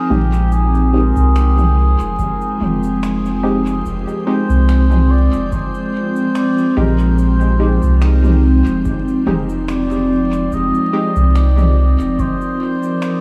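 Deep and spacious, this slow ambient dub excerpt at 72 BPM in F dorian rests on a single Fm7 chord, with a veiled cup-muted trumpet melody and mellow soft-mallet vibraphone arpeggios drifting through diffuse delay over a bright organ-like pad, a round sub bass sitting up front, muted filtered chord stabs with dub echo in the background, an overdriven electronic kit of cabasa, finger snaps and toms, and a deep analog kick entering at 2.2 seconds, all set in a dreamy reverb-soaked mix with vinyl crackle.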